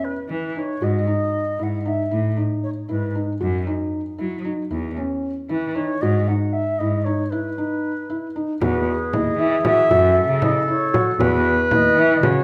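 Contemporary instrumental chamber music in an uneven 5/8 metre, moving at 231 BPM in eighths with a straight, restless and urgent feel, tuned slightly low to A4 = 436 Hz. A felt-muted upright piano plays arpeggios throughout, its thick felt giving a mellow, intimate tone with audible action noise, while a single bowed cello carries the bass up front with vibrato, portamento and a soft attack. An airy wooden baroque flute sings the melody with tongued, expressive phrasing, dropping out briefly between 3.3 and 5.5 seconds before returning. After a break at 7.3 seconds, a second section begins at 8.6 seconds, where a distant, roomy clarinet adds a classical-style second line and a small, bright frame drum enters close and dry under soft hands. The harmony moves from C#m through power chords and slash chords toward Emaj7, F#m7 and E5, all set in a moderate recital hall reverb, and the passage is cut from a longer piece.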